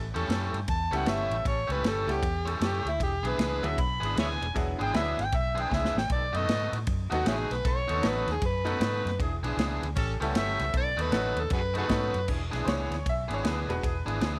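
Rollicking and swaggering, this electric blues shuffle at 155 BPM in E mixolydian features a gritty, overdriven harmonica solo with tongue slaps and scooped notes up front from 0.7 seconds, over a biting guitar riff, a round, foam-muted fingered bass, a jangly, metallic tack piano, background horn stabs and a natural country drum kit with a punchy kick, whose fill lands at 5.7 seconds, all in a small room with light reverb, in a section cut from a longer piece.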